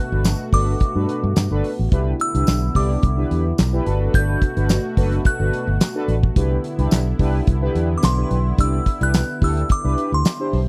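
A straight 4/4 groove at 108 BPM drives this feel-good, danceable slice of early-eighties boogie funk in C lydian, cut from a longer piece. A damped 70s drum kit sits up front with a fat snare, tight kick, hi-hat and handclaps, while a jingly tambourine rings in the background. The fingered electric bass is dark, round and punchy, anchoring the harmony as it moves between Gmaj9 and Cmaj9. A smooth, detuned sawtooth pad holds sustained chords with a soft attack and long release, and a mellow, brassy synth brass part adds round, vibrato-tinged accompaniment, both softened by chorus. On top, a delicate, tinkling FM tine bell carries the melody in a high register with a bright, decaying tone, chorus and slapback echo. The recording is dry and close, in a 1970s studio style with little reverb.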